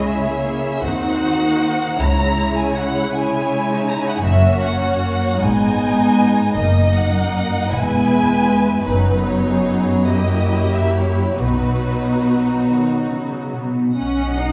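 A muted string orchestra opens together in a serene, tender slow romantic movement in B major, swaying in a rubato 6/8 at about 45-54 BPM counted in dotted quarters. Two con sordino violin sections sit close, with dark, veiled tone and soft attacks, carrying the melody and a second line above a distant viola accompaniment, vibrato-laden cellos and a rich double-bass foundation. The lush harmony moves from C#m through F#7b9 to settle on B at 11.4 seconds, and the violas drop out at 13.7 seconds, all bathed in the reverberant glow of a recital hall in this short fragment of a longer piece.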